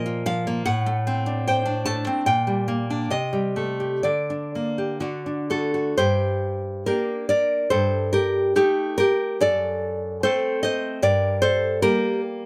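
In a 2/4 held loosely in rubato, somewhere between 61 and 76 BPM, this short excerpt from a longer romantic piece for solo classical guitar sits in G minor with a melancholic, wistful mood. A bright, up-front nylon-string guitar is fingerpicked across a range from F#2 to A5, moving through shadowed harmonies such as D7/A, Am7b5/C and Gm/D before a second phase from 6.0 seconds circles through Gmadd9 and D7/F# back to G minor. Light reverb lends the intimate playing a touch of air.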